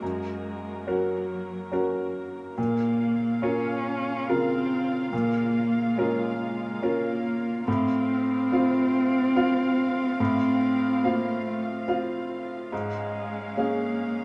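Lightly reverberant and intimate, this reflective, fragile neoclassical excerpt in Bb minor drifts at a rubato 71 BPM in 3/4, with a clear, woody upright piano up front carrying the accompaniment, a veiled, bowed solo cello with con sordino vibrato singing the second line close beside it, and a dark, muted chamber string section holding soft-edged sustained chords beneath them as the harmony moves from Gb through Bbm and F/A to Db/Ab.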